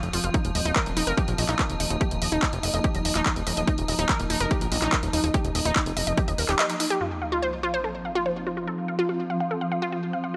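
A lush hall reverb wraps this hypnotic psychedelic trance excerpt at 144 BPM, where an overdriven electronic kick joins a techno kit of handclaps and hi-hat that sits up front beside a fat, detuned analog bass thickened by tube saturation. A punchy, wave-folded unison pluck riff with digital delay pumps over a swarming, granular drone and a mellow, ethereal pad in the background, both breathing with sidechain pumping. The kick stops at 6.3 seconds and the bass at 6.5 seconds, and the kit falls away at 7.0 seconds after a band accent, as a sub drop impact and a filter sweep on the tense drone join the pluck and pad in the final stretch.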